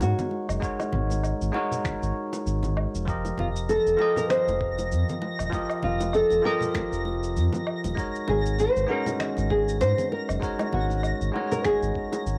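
A home cassette recording in a small, damp-sounding booth gives this short sunny sunset chillout excerpt at 98 BPM a hazy, tape-worn glow, with a lightly swung sixteenth feel over suspended ninth chords. A thumb-plucked nylon-string guitar carries the melody through cassette tape and analog delay, while a bell-like tine electric piano plays up front with the same tape and delay treatment, and a round, deep analog bass sits beneath with tube saturation. Gritty, overdriven electronic shaker, woodblock and finger snaps mix with hard-handed bongos and congas, a thumpy electronic kick joins at 0.6 s, and a twinkling granular shimmer with its own reverb sparkles in high from 3.4 s.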